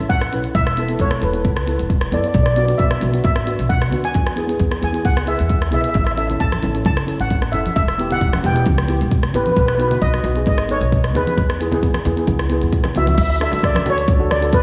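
Over a straight, bouncy four-beat pulse, this short cut of a sunny calypso moves through a simple chord cycle, touching A, Esus4, Bm7 and E before shifting to D near its close at 13.2 seconds. A pair of double-seconds steel pans played with medium rubber sticks carries the tune. One sits up front with a shimmering, metallic lead line in the upper register. The other supplies a shimmering accompaniment that sounds close-miked, dry and full. Beneath them, a woody pizzicato upright bass strung with steel holds the low end, alongside a glitchy electronic drum kit that is up front and re-recorded in a large room: a deep kick, clicky hi-hats, rim clicks and crash cymbal give it a produced edge. At 6.3 seconds, low-tuned congas played with soft hands join very quietly, their ringing tone close and dry, while the whole mix is bathed in a lush hall reverb with a hint of small-room ambience for a dreamy glow.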